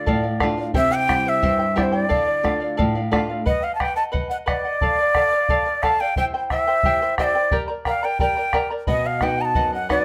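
Andean folk in a straight 2/4, this short cut from a longer piece feels wistful yet festive, led by an airy, up-front cane quena whose tongued notes carry a distinct chiff and lifted highs. A bright, shimmering charango, fingerpicked on double strings with some octave-doubled courses, accompanies throughout, while a round bombo enters at 0.1 seconds and a small-sounding nylon-string guitar, fingerpicked and up front, drops out at 3.4 seconds before returning at 8.9. The ensemble sits in a modest small-room reverb as the chords move between Dm, C, Gm and B.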